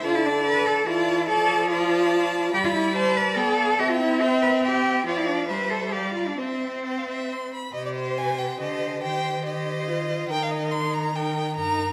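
Set in a three-beat metre with a flexible, rubato feel, this quick classical-period movement for string quartet comes across as lively and graceful. The first violin carries the melody in a rich, focused tone with vibrato, while the second violin adds its own line from further back, played expressively with vibrato and gliding portamento. Beneath them, the viola supplies accompaniment with a clear, close, up-front presence, and the cello anchors the bass with a focused, vibrato-laden sound that also sits forward yet carries a slightly distant quality. All four bowed instruments play together throughout this short fragment cut from a longer piece, with the harmony moving through chords such as Dm, G and C before turning to Cm at 7.7 seconds and later to Eb. A moderate scoring-stage reverb lends the ensemble a natural sense of space.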